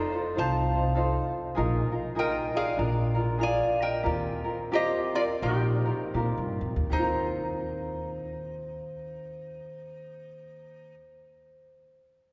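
A lap resonator guitar carries the melody in this sunny, relaxed Hawaiian excerpt, its slide tone metallic and nasal, plucked with fingerpicks. Beneath it, a vibraphone struck with medium hard mallets, motor off, adds a ringing, airy second line. A thumb-plucked tenor ukulele gives light, bright accompaniment, and a woody pizzicato upright bass strung with steel joins at 0.4 s; both sit up front in the mix. The 4/4 groove has swung eighths at 75-100 BPM in Eb major and slows down from 1.6 s to 6.9 s, moving from F7 through Bb7sus4 and Bb7 to Eb69, then settling on Ebsus2. A long, wet church reverb surrounds the ensemble, lending the whole a spacious, hall-like glow.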